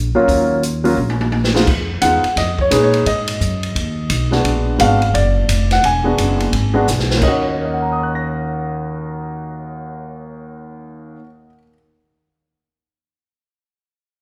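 A jazz piano trio excerpt in Eb minor swings at 173 BPM in 4/4, carrying a late-night mood through a short passage cut from a longer piece. The concert grand carries the melody from 0.1 seconds, its sound natural and up front with a deep bass register, while the upright bass, played pizzicato on steel strings, sits close with a woody, acoustic tone. The open drum kit, with dark cymbals, a medium-tuned snare and a boomy kick, plays drum fills before the harmony moves to Fm7b5 at 1.7 seconds and again just before the return to Ebm7 at 7.2 seconds, where the drums stop. The changes pass through Abm7, a tense Bb7b9b13 and an E9 along the way. After the bass drops out, the piano rings on briefly alone in a moderate recital hall reverb that gives the trio a spacious, concert-hall setting.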